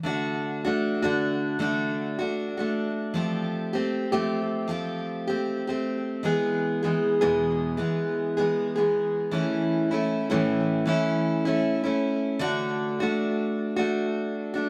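A lone picked steel-string acoustic guitar opens this easy-going, heartfelt pop piece, cut from a longer work, and carries it from 0.0 to 14.7 s. The instrument has a bright, full-bodied jumbo tone and sits up front in the mix, with a touch of tape echo and the moderate ambience of a small room around it. The playing has a gentle swing on the sixteenth notes in common time, and the tuning sits a little below standard pitch. The harmony moves through D, Fadd9, E and A, the unexpected Fadd9 lending a tender color before the progression returns to D. A new section begins at 12.4 s on that D chord, giving the brief passage a sense of homecoming.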